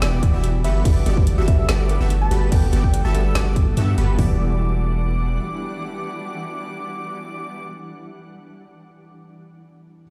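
A deep, up-front 808-style bass with a long sine tail anchors this lush, emotional future bass drop, where hard-clipped trap kicks, woody snare and metallic hats drive a half-time feel under punchy detuned supersaw stabs, airy arpeggios, a shimmering granular pad, a round FM lead melody and a clear vintage piano in the background, the tonal parts breathing with sidechain pumping over Em9 and Gmaj9 chords before the drums stop around 4.3 s.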